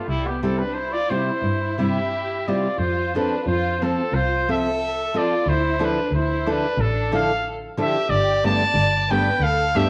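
Mexican folk mariachi at 91 BPM in 4/4 with a light swing, romantic and festive in mood, cut from a longer piece and set in an echo-chamber reverb with small-room ambience. A bright, classical-style trumpet carries the solo melody up front, while a lush, smooth studio violin section with vibrato adds a bowed second line and a veiled, muted double bass, bowed con sordino by one player, holds the low end from 0.1 seconds. A fingerpicked nylon-string guitar joins at 0.4 seconds with acoustic accompaniment as the harmony moves from C to F at 2.8 seconds, then on to Dmadd9 and Gadd9.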